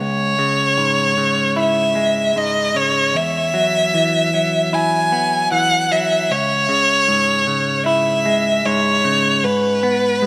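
Brooding, cinematic post-rock in which a single expressive bowed violin carries the melody with rich vibrato and portamento over clean, fingered arpeggios from a hollow-bodied electric guitar, both up front and colored by tape echo within a lush hall reverb, in a brief fragment cut from a longer piece.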